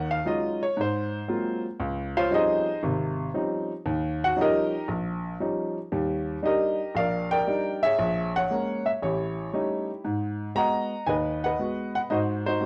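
A woody, smooth, vintage upright piano sits up front in this playful, warm solo jazz fragment, swinging through rich extended chords across two short sections under light reverb and the warbling pitch drift of worn, old cassette tape.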